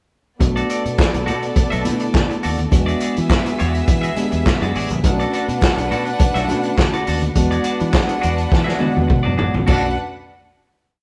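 A four-on-the-floor beat with sixteenth-note hats and a clap-layered snare from a muffled, lo-fi vintage drum kit drives this glamorous disco piece, as a round, syncopated fingered electric bass slides beneath choppy, bright semi-hollow electric guitar, a worn, slightly out-of-tune tine electric piano pushing rootless chords, a smooth studio violin section swelling on long notes and very quiet low-tuned congas, the band playing live together in a stone room until a drum fill at 8.5 s leads into the final chord at 9.7 s.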